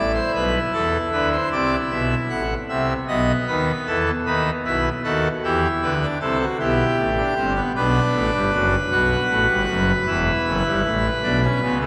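A majestic full pipe organ opens up front on an open E chord, its brilliant mixtures and romantic voicing spanning E1 to F#5 as this serious, contemplative baroque-style three-part fugue in E minor moves at 51 dotted-quarter beats per minute in a straight 12/8 through F#m7b5, B7, Em, Bm and C#m7b5/E, all bathed in a wet church reverb with a 3.2-second decay across this 11.9-second portion of a longer piece.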